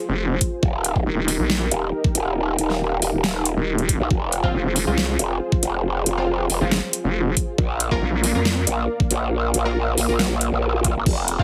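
A half-time 4/4 groove at 138 BPM drives this menacing, heavy wobble dubstep, cut from a longer piece. An overdriven, knocking electronic kick and a dubstep kit with a huge snare, metallic hi-hats and crash cymbal sit up front, while a nasal, resonant vowel-sweep wobble bass (until 8.7 s) and a growling, saturated growl bass churn through chorus and overdrive beneath a lush supersaw pad that pumps against the sidechain behind a low-pass filter. From 4.4 s, a bold, punchy orchestra-hit-like synth stab joins with phaser and digital delay over chords moving from Fm to Eb, back to Fm and on to Bb, the whole mix squeezed into a heavily compressed radio sound with light reverb.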